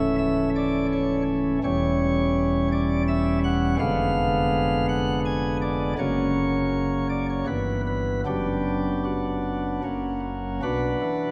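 A solo pipe organ, voiced with sparkling flute stops that sound light and bright with a baroque chiff, sits up front in this dark, solemn classical chorale-style fragment in B minor. Moving in 3/4 at roughly 75-84 BPM with a flexible, rubato feel, it spans a range from C#1 to Ab5, passing through diminished harmonies before settling on B minor at 10.6 seconds. A wet church reverb with a 3.3-second decay surrounds the organ, giving this short cut from a longer piece a cavernous, sacred space.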